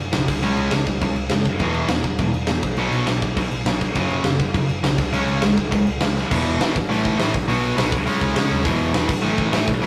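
A big, up-front rock drum kit with a fat snare and punchy kick drives this rowdy, upbeat punk rock excerpt at 204 BPM in E major alongside a dark, sludgy overdriven guitar in the background, a bright, tight distorted guitar and a growly, overdriven picked electric bass, all caught in a rough rehearsal-room recording with tube saturation, light reverb and a faint mains hum, with a drum fill at 6.2 seconds leading into a new section.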